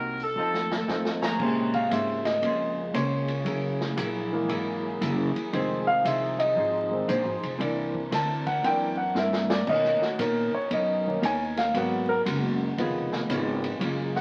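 This short swing cut is led by a warm, up-front grand piano that enters at 0.9 seconds and takes a solo from 1.4 seconds to the end, moving through Bb minor harmonies at 116 BPM with a triplet-leaning swing feel. A bright, tight saxophone section opens with a brief melodic phrase, joined at 0.4 seconds by a clear, close-miked trumpet section punching out stabs over an F7 chord while the drums play a fill. Underneath, a woody, thumpy upright bass and a clean, compressed hollow-body electric guitar carry the accompaniment throughout, and a swinging big-band kit with a punchy kick, snare, hi-hat, ride and crash adds a second fill near 9.2 seconds. From 1.4 seconds a distant, roomy trombone section holds sustained chords in the background as the piano solo winds through lush ninth and seventh chords. The sound is brassy and swinging, set in a moderate studio reverb and coloured by the crackle and aged tone of a very old 78 rpm record.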